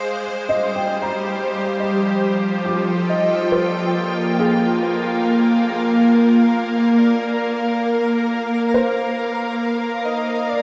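A straight 4/4 pulse at 69 BPM carries this peaceful, weightless ambient excerpt in Bb mixolydian, where a bright, detuned wavetable pad holds morphing sustained chords up front with ensemble chorus, a felt-muted upright piano plays mellow, intimate arpeggios in the background through tape echo, a twinkling granular texture sparkles high above with an octave-up shimmer, and a velvety sawtooth lead with vibrato and a sub octave enters at 3.1 seconds before lead and texture both fade in from 3.5 seconds, set in a dark production with a long shimmer reverb.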